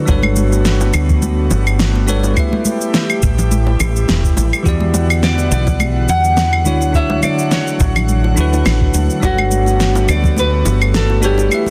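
A lush hall sheen over a dense, heavily limited mix carries this wistful, smooth sunset chillout piece at 105 BPM, its sixteenths lightly swung as the harmony drifts from Gmaj9#11 through Em9 to Dmaj7. A bell-like tine electric piano with delay and a breathy, detuned pad with chorus hold the chords, while a round, punchy fretless bass sits up front beneath a deep, dry electronic kick, an overdriven fat snare with shaker and claves, and soft-handed bongos and congas in the background. At 5.2 seconds a full-bodied, fingerpicked nylon-string guitar takes the melody, with audible finger squeak and a touch of delay.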